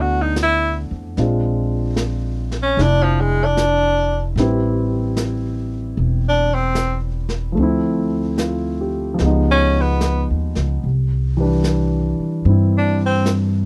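Tender and romantic, this swung jazz ballad moves at an unhurried pace and is cut from a longer piece. A bright tenor saxophone carries the melody as a solo from the first moment, its punchy, forceful jazz tone lightly touched with vibrato and sitting up front. A warm concert grand piano supports it with up-front accompaniment and deep bass, moving through rich harmony from a rootless G69 through Bb9, Am9 and Dm9 to C#9 and a closing Cmaj9. Underneath, a woody pizzicato upright bass with steel strings holds down the low register, also placed up front. A vintage brush kit, dark and smooth with a medium-tuned snare and hi-hat, joins at 0.4 seconds. The sound is dry and close, with little reverb, in the manner of a 1970s studio recording.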